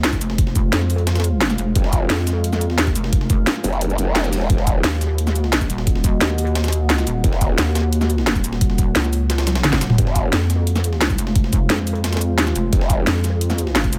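A dry sound with little reverb frames this short, dark and mechanical cut of technical drum and bass at 175 BPM in F phrygian, its harmony moving from Fm to Ebm at 4.5 seconds and back to Fm at 10.0 seconds. A knocking, overdriven electronic kick anchors an up-front, layered drum and bass kit with a cracking snare, bright hats, shaker and toms, while a gritty, compressed breakbeat kit with a medium-tuned snare and filtered hats sits in the background. A pulsing, detuned pluck wobble bass with chorus carries the low end throughout, and a snarling growl bass, saturated and shaped by a formant filter, bursts in first at 1.8 seconds and then in brief stabs later on. Beneath it all, a deep, moody pad of warbling sawtooth and sine layers with a sub octave holds sustained chords, carrying vintage 12-bit sampler grit, its own reverb and sidechain pumping. A drum fill at 9.5 seconds leads into the return to Fm.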